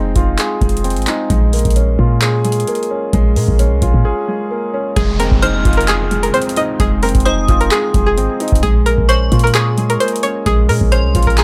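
A dark, worn baby grand piano opens this dark, menacing trap fragment in F minor, its mellow chords sustaining long through an analog delay. A clean, deep 808-style bass with a sine-like boom sits beneath it, and a booming analog drum machine comes in almost at once, up front and tape-warm, with a deep kick, metallic hi-hats and handclaps driving a half-time feel at 131 BPM. The harmony moves between Fm7 and Bbm7, and a short break at 4.0 seconds clears space before the music shifts at 5.0 seconds. There a twangy, nasal, string-like resonator pluck takes the melody, bright and chorused with a filter sweep and echoing delay, while an electronic downlifter sinks in the background. From 5.4 seconds a metallic, inharmonic FM bell adds a high, ringing, warbling second line with a vintage, full-bodied tone and a long release. The mix carries little reverb and leans heavily on echo, and the passage is cut from a longer piece.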